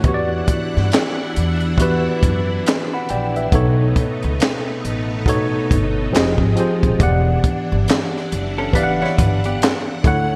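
R&B with a neo-soul lean, this short excerpt cut from a longer piece moves at a slow 69 BPM in 4/4 with a swung sixteenth-note feel, settling into a smooth, introspective mood in E dorian. A worn, slightly out-of-tune tine electric piano sits up front with light overdrive, laying down the accompaniment over chords that move from Em9 to B9, touch Fm9 at 6.1 seconds, and return to Em9. Beneath it, a woody, thumpy upright bass played pizzicato anchors the low end, while a compact cocktail drum kit with a punchy kick, high-tuned snare, hi-hat and handclaps sounds dark and rolled-off, treated with gated reverb. A vintage string machine voiced as violins holds shimmering, slow-attack sawtooth chords in the background with ensemble chorus. Near the close, at 8.6 seconds, a clean, compressed hollow-body jazz guitar with analog chorus slips in briefly with a picked second line. The whole mix carries a bright 1980s-style digital sheen and a lush hall reverb.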